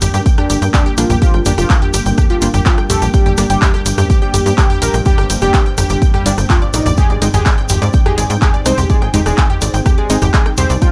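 This dramatic, driving melodic techno excerpt opens with a moody, sidechain-pumped analog pad, a lush, bright detuned pluck arpeggio with delay, a tight, nasal sequencer bass, an overdriven drum kit of handclaps, hi-hat, rim click and toms, and a grainy, distant egg shaker. A punchy electronic kick soon lands up front, a fat, mellow analog lead with vibrato, chorus and delay carries the melody from 0.4 s, and brassy synth stabs sit in the background, while a very quiet, warbling vintage drone holds G2 from 0.9 s. The dry mix rides a G minor chord before shifting to Ab at 7.0 s.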